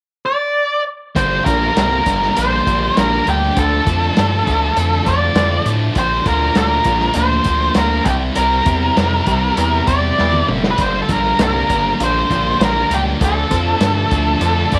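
A smoky, gritty blues rock power trio cut with a southern rock edge, moving at a straight 100 BPM in G dorian through Gm, Dm, Bb and C. A dark, up-front octave-fuzz lead guitar carries the melody with slapback echo, entering first at 0.3 seconds before a bright, double-tracked fuzz guitar riff, a nasal, aggressive synth bass with a resonant filter pluck, and a muffled, lo-fi vintage drum kit with a tight kick all arrive at 1.2 seconds. A drum fill at 10.2 seconds leads back to Gm, and light reverb gives the whole a small-room feel in this excerpt from a longer piece.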